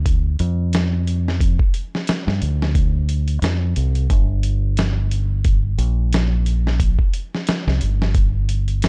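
Melancholic and smoky, this short trip hop excerpt moves at 89 BPM in 4/4 in G minor, with a gentle swing on the sixteenths. A deep dub fingered electric bass opens at 0.0 seconds, sitting up front with a dark, round tone, heard both direct and amped, and thickened by tube saturation as it ranges from G1 to G2. A dusty soul sampler-style drum kit joins at 0.1 seconds, its hi-hat, thumpy kick and medium-tuned snare carrying a compressed, gritty, 12-bit sampler character. The drums also sit up front, surrounded by studio ambience. The overall production is dark and warm, bathed in digital ambience, and the two parts play together until the cut at 8.9 seconds.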